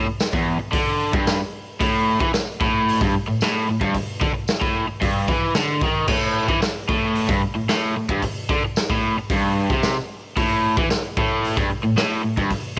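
A crunchy, overdriven electric guitar leads this swaggering, raw garage rock excerpt, its picked, double-tracked riff sitting up front between E2 and E3 from the very first moment. At 0.2 seconds a raw garage drum kit joins with boomy kick, medium-tuned snare, hi-hat and crash cymbal, played in a straight 4/4 feel. The kit sounds saturated and gritty, with a rolled-off top and a pumping small-room character, yet it stays close and forward in the mix. A jingly, bright tambourine sits in the background, adding shimmer beneath the guitar and drums. A light, small-room reverb gives the whole short passage an unpolished, live-in-the-garage quality, and it breaks off at 12.8 seconds as though cut from a longer performance.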